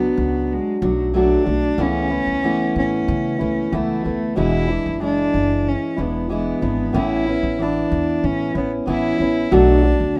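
This acoustic pop passage, cut from a longer piece, has an easy-going, carefree mood in a straight 4/4 feel. A single bowed cello carries the melody up front, its earthy, slightly nasal tone softened by a smooth top and light vibrato. A fingerpicked steel-string dreadnought guitar plays a full-bodied accompaniment just as close, while a pizzicato upright bass adds a woody, thumpy low end. All three instruments play throughout the 10.2 seconds, moving through Bm7, Aadd9/C#, E7 and Aadd9 before returning to Bm7. Light reverb gives the recording a gentle sense of space.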